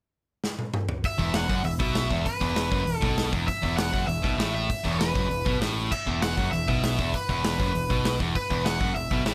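A big rock drum kit opens this rebellious punk rock passage with a fill at 0.4 s, its punchy kick, medium-tuned snare, toms, hi-hat and bright crash sitting up front in a dry studio room. At 1.1 s a raw, overdriven garage guitar takes the melody up front, joined a moment later by a picked distorted guitar riffing low on an E5 chord, a sludgier, warmer distorted guitar in the background, and a growly, direct picked electric bass underneath. The energetic excerpt charges along in a straight 4/4 at 197 BPM.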